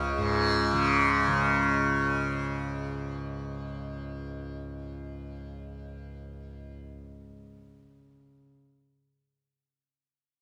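Solemn and introspective, this brief excerpt from a longer Indian classical piece rests entirely on a single tanpura drone. The acoustic tanpura sits up front, softly plucked, with a buzzing, shimmering tone that hangs in the air from 0.0 to 8.4 seconds across a span from C#2 to C#3. The pulse is set at 130 BPM in a straight 4/4, though the drone itself carries the music's meditative weight. Close, detailed microphones capture every grain of the instrument's resonance, while a moderate reverb with a 1.8-second decay lends it the glow of a spacious stage. The result is a still, contemplative backdrop that feels like the quiet threshold of something larger.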